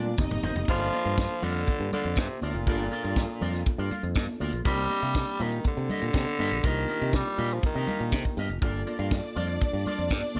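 Disco excerpt at 121 BPM in G minor, driving and danceable, where a growling, raspy tenor saxophone carries the melody until 8.3 seconds over a tight funk drum kit with a high-tuned snare, a bright, growly fingered electric bass, a dark envelope-filtered electric guitar with lush chorus, a mellow tine electric piano, and congas and jingly tambourine in the background, while a rich, bowed violin section with tape echo plays a second line at the start and returns at 8.6 seconds, all in a small room.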